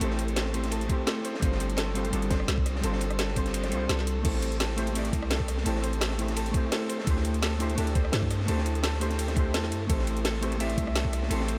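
Rolling and melancholic, this liquid drum and bass passage is cut from a longer piece and drifts through a dreamy mix soaked in a huge ambient reverb. Up front, a dark, clean hollow-body jazz guitar plays fingered accompaniment through ensemble chorus and diffuse ambient delay, moving over Am7, G7sus4 and D9sus4 chords, while a concert harp rings out fingerpicked arpeggios with tape echo. A deep, mellow 808-style bass holds long sine notes with a fast attack that decay beneath the harmony. The rhythm layers an overdriven garage kit, with a woody snare, metallic hats, crash, ride and rim clicks, over a gritty, saturated breakbeat kit that sits in the background with dark cymbals, a high-tuned snare, a rolled-off top and high-pass filtering. A knocking, overdriven electronic kick enters at 0.9 seconds, drops out at 3.5 seconds and returns at 4.2 seconds, while the groove carries a slight 16th-note swing.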